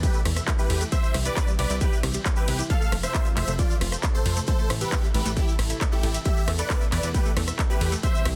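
A huge, detuned supersaw lead with sidechain pumping and digital delay carries the melody in this bittersweet, euphoric uplifting trance excerpt at 135 BPM, over Esus4, C, F and Am chords, with a silky string pad, a tight, chorused sequenced arpeggio in the background, a punchy, plucky bass, an up-front distorted electronic kick, metallic-hatted techno drums with handclaps, ride and rim click, and a grainy egg shaker, all in a dense, heavily limited modern mix.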